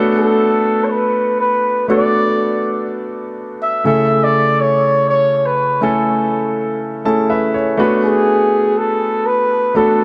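Pop with a glossy, romantic mood, this short excerpt moves at a steady, straight pulse in 4/4. A concert grand piano carries the accompaniment throughout, its tone intimate and polished with deep bass, long sustain and audible action noise, sitting up front in the mix. A mellow flugelhorn takes the solo melody from 0.2 seconds, sitting in a modest middle range with a distant, roomy character. The harmony moves from Bm7 to Amaj7 at 3.9 seconds and back to Bm7 at 7.8 seconds, just after a brief piano fill that begins at 6.8 seconds. A lush hall reverb with a long tail surrounds the whole performance, lending it a spacious, romantic sheen.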